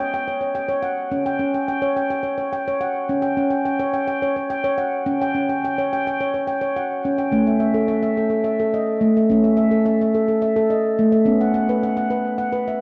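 A solo handpan rings out up front with a stainless-steel sheen, sharp finger strokes and a boxy small-room tone, bathed in diffuse ambient delay and a wet reverb within a dark, warm production as this meditative, hypnotic world excerpt moves in a straight 7/8 from C#sus4 to A at 7.3 seconds and B5 at 11.3 seconds.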